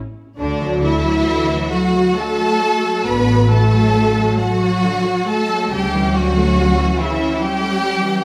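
Swaying in a rubato 12/8 at roughly 41-49 dotted-quarter beats per minute, this lyrical, warm excerpt of a slow romantic movement for string orchestra in D major opens at 0.4 s. A lush, vibrato-laden violin section sings the high melody over a focused, up-front second violin line, smooth violas and an expressive cello bass that glides with portamento. A close double bass section anchors the low end until 6.8 s, while the harmony moves from D to A7 over a D bass at 5.7 s, the strings set in a moderate scoring-stage reverb.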